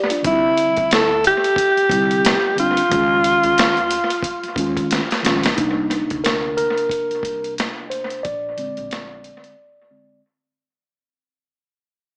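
A breathy alto saxophone carries the melody up front, close-miked with jazz-style vibrato and an analog delay, until 4.9 seconds, when a drum fill takes over. This is a mellow, smoky jazz-hop excerpt in C minor at 90 BPM, cut from a longer piece, with a swung 4/4 feel. The sampler-style boom bap kit sounds gritty, compressed and pitched down, with a thumpy kick, a high-tuned snare, its own analog delay and the air of a large room. Underneath, a pizzicato upright bass on gut strings sits in the background with a woody, dark tone, while a clean, direct tine electric piano plays the chords, moving from Cadd9 to Dbadd9. At 5.6 seconds the electric piano steps into a solo over Cm7 and Bb7 as the music fades out, and the whole mix has an echo-heavy, small-speaker character under light reverb.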